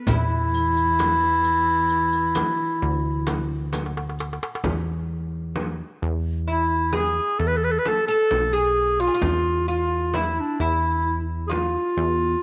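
A classical-style clarinet leads this hypnotic, soulful Arabic maqam ensemble piece, sitting up front as a warm solo voice in E maqam hijaz, tuned to A4 = 438 Hz. The tempo is 131 BPM counted in eighths, in a straight 10/8 metre. Beneath the clarinet, a fretless, plectrum-plucked oud with double strings adds a woody, deep second line, and a bowed cello with focused vibrato holds a rich low note in the background until 3.7 seconds. A punchy, funky analog bass built from sawtooth and pulse waves anchors the low end up front, its filter pluck giving each note a fast attack and a decaying tail. From the start, the percussion includes a crisp, metal-shelled darbuka played with soft hands, close and dry, a riq with bright jingles in a small room, and a large frame drum struck with hard hands in a live room. The riq drops out at 4.3 seconds, during a drum fill, and the darbuka follows when the fill ends at 4.6 seconds, where a new section begins. 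The frame drum carries the rhythm on into the second section, and the ensemble as a whole sits in light reverb in this passage cut from a longer piece.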